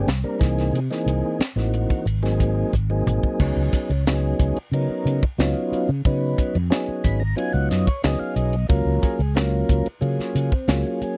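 A mellow tonewheel organ with key click and slow rotary speaker opens alongside a round, punchy fretless electric bass bathed in lush chorus, joined by a tight funk drum kit with a high-tuned snare in this slick, funky 90 BPM jazz fusion excerpt, where a drum fill at 2.7 s leads into a Db mixolydian groove and the organ takes a fill at 6.7 s, all in a dry, close 1970s-style studio recording.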